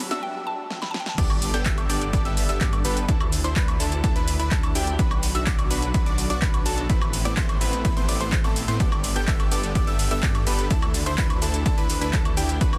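A short build-up opens this festival progressive house excerpt at 126 BPM in G major: a woody, round mallet-like synth pluck carries the melody with chorus and tape echo, over a very quiet riser and drum fill. A bright concert grand piano sits in the background, spinning high arpeggios, while a detuned supersaw stab punches out the riff, both pumping against the sidechain and trailed by tape echo. The pluck falls away at 1.2 seconds as the drop lands with an impact that lasts until 3.1 seconds. An up-front, overdriven electronic kick and a thick, lush detuned saw bass drive the drop, with the bass chorused and saturated. A layered pop kit, recorded in a small room, adds a fat snare, metallic hats, handclaps, cabasa, woodblock and crash. The mood is triumphant and euphoric, moving through Gadd9, Dsus2, Bm and Amadd9 in a dense, heavily limited modern mix with light reverb.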